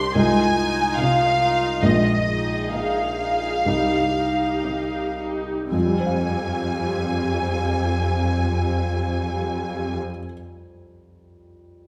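Strings and a felt-muted upright piano begin together in this sorrowful, bittersweet cinematic film cue in F minor, moving in a rubato 4/4 at roughly 55-74 BPM and slowing through its opening 5.7 seconds. A bowed violin section carries the melody up front, its tone warm, even and close with vibrato. Beneath it, a rich viola section fills the middle, and a clear, focused cello section supplies the bass from a lush, more distant position. The piano's accompaniment is soft, mellow and intimate, with a vintage character, and it holds on alone after the strings stop at 10.0 seconds, until 11.9 seconds. The harmony moves from Fm7/C through Bb7sus4 and Cm to an Fmadd9 that opens a second section at 5.7 seconds, all set in a wet, reverberant concert-hall space, cut from a longer piece.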